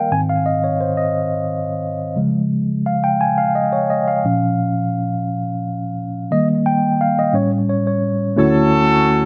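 Jubilant and soulful, this brief gospel fragment sways in 6/8 at 58 BPM in Ab major, with a clean, mellow tine electric piano playing alone and up front from 0.0 seconds, its sound coming through built-in speakers and carrying a slapback echo. The piano moves through Ab, Db, Bbm and Eb before turning to A7 and landing on Dmaj9 at 8.4 seconds, where a warm, distant horn section in jazz style enters with a short ensemble melody. The overall sound is dry and open-air, with little reverb, though the horns themselves sound roomy.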